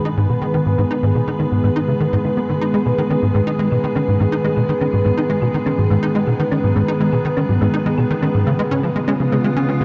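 Ambient, sequencer-driven space music at 123 BPM in G# minor, mysterious and expansive, this short cut pairs a bright, morphing wavetable pad of detuned chords up front with a punchy, saturated sawtooth sequencer bass riff that starts at 0.1 seconds, while a round, tine-like thumb-piano synth pluck fades in with gentle chorused, delayed arpeggios in the background, all soaked in a huge dreamy reverb as the harmony moves from G#m to C#7 at 8.5 seconds.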